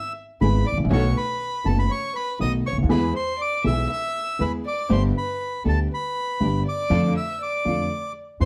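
A rubato 4/4 tango at 120 BPM, dramatic and sultry and cut from a longer piece, opens with a reedy, up-front bandoneon carrying the melody while a dark, intimate violin bows a smooth sul tasto second line with light vibrato, and from 0.4 s a slightly detuned, woody upright piano, a warm pizzicato upright bass on steel strings and a lush, distant string section playing bowed stabs join in under light reverb, over chords moving from E through B7 and G to Dm/F.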